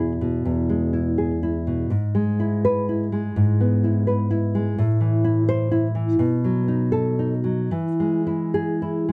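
The rhythm breathes freely, a rubato pulse in four that stretches and relaxes like spoken phrasing. This short romantic piece for solo classical guitar, cut from a longer work, feels sunny and tender throughout its 9.1 seconds. The nylon-string guitar sits up front with a dark, thumb-plucked tone, ranging from a deep low E up to a C in the treble. The harmony moves from E to E over G sharp, then colours toward A minor at 4.8 seconds before a B7 leads home to E. Close, detailed microphones and a nearly dry room capture every nuance of the acoustic instrument, giving the recording an intimate, in-the-room presence.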